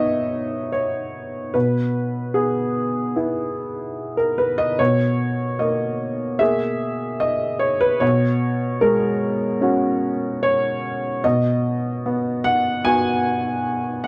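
Rubato in 4/4, this intimate, peaceful neoclassical minimalist piece features a solo upright piano, woody, slightly detuned and vintage in tone and placed up front in a dark, warm production with a short studio reverb, moving through chords that rest on a B bass for a brief 14.1-second fragment cut from a longer work.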